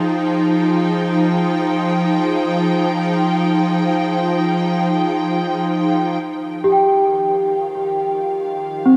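Drenched in a huge ambient reverb with an 8.0-second tail, this short fragment of a longer piece sounds serene and spacious, floating in free time in F minor and tuned to A4 = 439 Hz. An evolving wavetable pad sits up front, its detuned, morphing sine tones holding sustained chords with slow attacks and long releases, treated with ensemble chorus and its own reverb. Beneath it, a calm organ-like drone in unison stays in the background, sharing that chorus and reverb. The harmony rests on Fm9 before shifting to Ebadd9 at 6.2 seconds. At 6.6 seconds a large celesta enters up front with delicate, bell-like arpeggios, its sweet, ringing tone carried by a tape echo.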